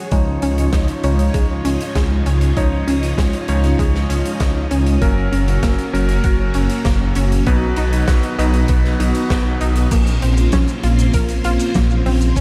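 A dark, warm production with light reverb and a small-room ambience frames this cinematic, moody synthwave excerpt at 98 BPM in 4/4, moving through Dbadd9, Gb and B before settling on Bbmadd9 at 9.9 seconds. A deep, rumbling detuned saw bass sits up front with sidechain pumping, joined by a knocking, tape-tinged electronic kick, while a big rock kit of fat snare, hi-hat, shaker and crash sits lower beneath them. Above, a lush string machine holds slow-attack chords with ensemble chorus and pumping, a punchy unison pluck arpeggiates through digital delay in the background, and a clear, clangy electric grand piano plays filtered, delayed stabs under a filter sweep until it stops at 9.9 seconds.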